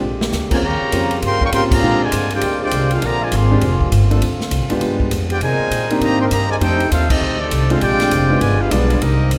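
Big band swing, brassy and joyful, in which a clear, tight trumpet section carries the melody over a dark, distant trombone line and a background trombone section holding sustained chords with light vibrato, while a woody pizzicato upright bass sits up front, a concert grand piano adds deep-bassed accompaniment, and an airy, polished drum kit with a punchy kick opens on a short fill, with the full band landing accents at 1.7 and 7.1 seconds, all in a moderate concert hall reverb in this brief cut from a longer piece.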